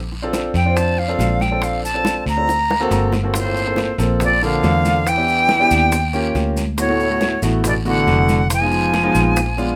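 A studio sound with moderate room ambience frames this sunny, sophisticated Afro-Cuban jazz excerpt in Bb major, moving at 140 BPM in a straight 4/4. A dark, punchy vintage electric bass, foam-muted and fingered, sits up front beside a clear concert grand piano with deep low end that accompanies rich chords such as Bbmaj7, Gm11 and D69. Soft-handed bongos and ringing congas stay in the background, while a raspy guiro and grainy, mellow maracas add close texture. From 0.6 s a breathy, bright jazz flute carries the melody up front, its tongued notes reedy and touched with vibrato. After a drum fill at 2.5 s, a growling, gritty trombone enters at 3.4 s as a second line, close-miked and jazz-styled, with scooped notes and vibrato.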